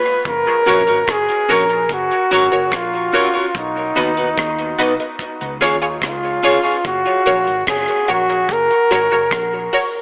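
Through a hazy, telephone-thin sound steeped in echo-chamber reverb, this spacious dub reggae excerpt puts a punchy flugelhorn up front with light vibrato and scooped notes trailing dub echo, over bright, detuned chord stabs carrying phaser and echo, a clean hollow-body electric guitar echoing from 0.7 to 6.8 seconds, and a dark, round, foam-muted bass and a dry acoustic drum kit of tight kick, hi-hat and rim click that both enter at 0.3 seconds.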